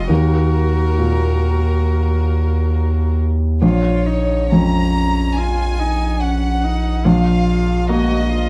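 Reflective and longing, this brief neoclassical piano-and-strings fragment in rubato 4/4 sets a sul tasto chamber violin section carrying the melody with light vibrato and a slapback echo over a single cello's airy-bowed second line, a felt-muted upright piano whose mellow accompaniment lets its action noise through, and a deep, saturated sine sub bass sitting up front, within a dark production with light reverb that moves from Ebm to Bbm at 3.6 seconds.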